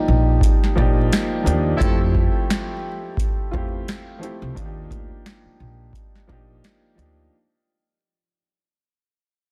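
Boom-bap hip-hop with a soulful, confident swing, this brief excerpt cut from a longer piece pairs a clear, smooth upright piano with cassette-tape character and a woody, thumpy pizzicato upright bass over a booming, overdriven analog drum machine with deep kick, crisp snare and metallic hats, while a dark fingerpicked nylon-string guitar sits in the background for its first 1.1 seconds and a distant, roomy horn section with light vibrato adds a short stab at 1.8 seconds, all under vinyl crackle, light studio reverb and a fade across the whole clip as Ebmaj7 moves to Fmaj7 and back.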